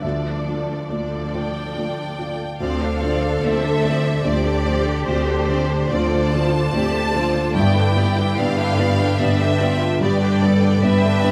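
Sorrowful and bittersweet, this cinematic excerpt from an orchestral film score moves in a rubato three-time over Dm, Dm7 and G chords. A soft, felt-muted upright piano with audible action noise, a bright ringing concert harp playing arpeggios, a dark, distant cello section, and background violas and second violins with expressive vibrato open together, while a clear, smooth violin section takes the melody at 1.3 seconds. A woody double bass section joins at 2.6 seconds, and the whole ensemble sits in the wet reverb of a scoring stage.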